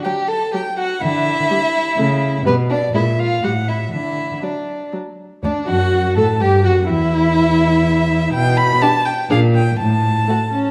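Graceful and cheerful, this quick classical-period movement for string quartet moves at 124 BPM in 3/4 and D major, set in a wet recital hall with a dark, warm production. The first violin carries the melody up front with light vibrato, a soft attack and an airy, intimate bow. The second violin plays a smooth, distant second line, while the viola adds an expressive accompaniment coloured by portamento. The cello enters at 1.0 seconds with a rich, even bass that is the loudest voice, and a new section begins at 5.4 seconds before the cut at 10.7 seconds.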